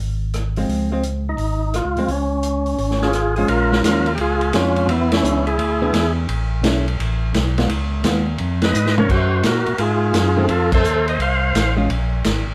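Soul jazz organ trio swinging at 171 BPM in Db major with a bluesy mood, as a fat, key-clicking tonewheel organ carries the bass through a slow rotary speaker, a punchy vintage drum kit with dark cymbals drives the groove, a dark, clean hollow-body guitar comps, and a percussive, lightly overdriven organ takes the melody through a fast rotary speaker, all in a stone room with band accents at 5.1 and 10.7 seconds and a drum fill at 8.7 seconds.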